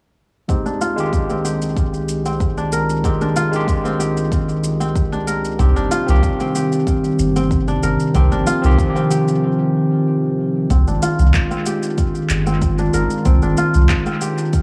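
This earthy, hypnotic organic downtempo passage, cut from a longer piece, opens at 0.5 s at 94 BPM in a straight 4/4. Up front, a barky, gritty tine electric piano played through a combo amp carries the accompaniment with sidechain pumping, a low-pass filter and analog delay. Beneath it, a smooth, detuned sawtooth pad holds soft-attack chords with chorus and pumping of its own, while a crisp, ringing kora fingerpicks arpeggios through tape echo and a filter sweep. A deep, overdriven electronic kick anchors the groove, joined by layered electronic shaker and handclaps treated with overdrive and analog delay. At 5.6 s a round, mellow sine sub bass enters prominently as the harmony moves from Fm7/C to Cm, and after a short break at 9.4 s the electric piano falls away, leaving the kora, pad, bass and drums to settle on Fm7. The mix is echo-heavy, with a moderate plate reverb over a small room ambience.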